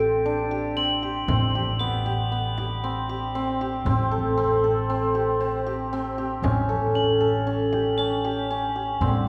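Moving in a straight 5/4 at 116 BPM, this short fragment of contemporary chamber music in A dorian feels hypnotic and urgent. Up front, a hammered dulcimer spins bright, shimmering arpeggios between B3 and A4, while a pizzicato upright bass holds a woody, dark A1 beneath it. High, bell-like crotales, played with hard rubber mallets, add a soft, mellow ringing in two brief passages. A frame drum enters at 1.0 s, very quiet, close and dry. The harmony moves from D7sus4/A through C5/A and Am7 to A7, and at 9.0 s a distant woodwind section joins with sustained chords carrying a light vibrato. Everything sits in the lush reverb of a church or concert hall.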